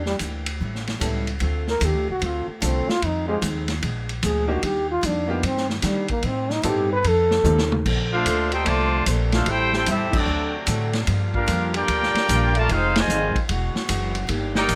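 A breathy, mellow trombone carries the melody up front through the opening, its light vibrato touched by plate reverb, in this swinging, energetic big band jazz excerpt at 149 BPM in 4/4 with a swung eighth-note feel. Beneath it, a woody, thumpy upright bass with gut strings sits close, while a vintage drum kit with dark cymbals and a punchy kick drives the groove. A picked steel-string acoustic guitar stays in the background throughout, and a clear baby grand piano with short sustain adds accompaniment from 1.0 s to 7.7 s. A drum fill at 7.4 s hands off to the second section at 7.8 s, where the music settles into Bb major on a Bbmaj9 chord. A clear trumpet section with vintage vibrato takes the melody from 8.1 s, backed by one trombone section holding sustained chords and another, very quiet and tight, playing a second line. Full band accents at 10.1 and 12.9 seconds punctuate the passage before it ends on an E9 chord.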